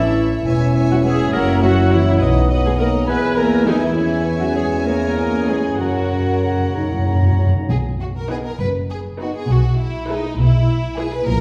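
Swaying in a rubato 6/8 at 63-70 BPM in B major, this graceful, cheerful excerpt from a quick classical-period orchestral movement sets a dark, sul tasto violin melody over a clear second violin line, a hollow flute section, a mellow clarinet and a warm oboe, with rich viola and punchy bassoon accompaniment, sustained chords from a distant horn section, an up-front double bass and background cellos entering at 0.9 s, while hard-mallet, calf-head timpani add a fill from 5.8 s, the orchestra heard from further back in a reverberant recital hall.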